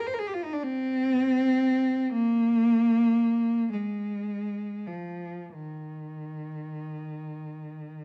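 A single bowed cello sings alone from the start, its focused tone carrying vibrato and a smooth top as it moves between Eb3 and C5 in this short, nostalgic classical fragment cut from a longer piece. The lyrical line unfolds freely in 6/8 with expressive rubato, hovering around 27-42 BPM in dotted quarters and tuned slightly low to A4 = 438 Hz. The cello sits up front in a dark production with light reverb, lasting about 8 seconds.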